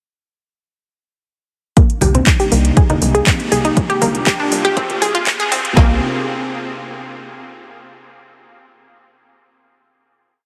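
A detuned, lush unison pluck sits up front from 1.8 seconds, cycling a six-step arpeggio that drifts against the bar, its bright sawtooth tone dragged through a filter sweep and trailed by dub echo as it pumps with the sidechain. This is a dreamy, bittersweet progressive house piece in C minor at 120 BPM, a short build that runs until 5.8 seconds before settling on a final Cm7, moving through Abmaj7/C, C9sus4 and Fmadd9/C along the way. Alongside it, a punchy deep house kit sits up front and drives a four-on-the-floor kick with a woody snare and claps, joined by a second, overdriven house kit of metallic hats and backbeat claps, while soft-handed congas play a tribal loop in the background. A tight sequencer bass holds C2 with an off-beat sawtooth-and-square pulse touched by ring modulation, and a breathy, warbling pad with chorus breathes slow sustained chords, both pumping against the kick. 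A very quiet riser slips in at 3.4 seconds, and the whole mix is bathed in a huge ambient reverb yet squeezed into a heavily compressed, radio-like sound.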